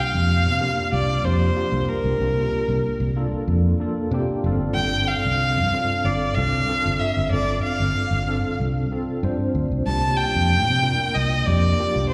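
A straight 4/4 groove at 94 BPM drives this intense electric jazz fusion excerpt, anchored by a round, punchy fretless electric bass sitting up front. A bowed solo violin carries the melody with a nasal, smooth vibrato, colored by slapback and tape echo. A clean tine electric piano with fast tremolo, analog chorus and slapback echo accompanies through a combo amp over C9sus4 and G9sus4 chords, adding a brief fill at 3.8 seconds, all heard as a live gig through the venue's PA with recital hall reverb.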